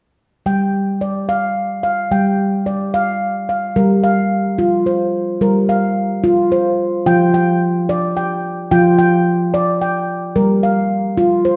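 Meditative and hypnotic, this short world piece, cut from a longer work, centers on a solo handpan in G minor pentatonic, moving at 73 BPM in dotted quarters within a 6/8 metre and a straight feel. The handpan sounds from 0.5 to 11.6 seconds, ranging from F3 to G5, its nitrided steel ringing and mellow under soft fingertips, placed up front in the mix. A soaked scoring-stage reverb with a 1.6-second decay, plus a touch of studio ambience, surrounds the instrument. The harmony rests on G5 at the start, settles on G minor at 3.8 seconds, moves to F5, and returns to G minor near the close. The opening phrase gives way to a longer second passage at 3.8 seconds, sustaining the calm, trance-like mood throughout.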